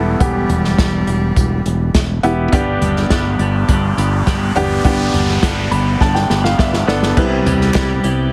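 Piano-driven pop with a hopeful, anthemic mood, this short cut from a longer piece moves in a straight 4/4 over Em and G before arriving on Cmaj7. A clear, polished baby grand carries the accompaniment up front throughout, anchored by a growly, punchy fingered electric bass and an unplugged drum kit played with bundle sticks, whose dark cymbals, tight kick and rolled-off top give it a smooth character. A single cello with a soft attack carries the melody briefly at the opening and returns at 7.2 seconds, intimate and airy, bowed sul tasto with light vibrato. From 2.5 seconds a bright, twangy twelve-string electric guitar adds a picked riff bathed in lush chorus, while electronic downlifter and noise-sweep effects, along with piano and drum fills, lead into the change. A crisp, very quiet group handclap slips in near 7.7 seconds, and the whole mix sits in light studio reverb with a heavily compressed radio sound.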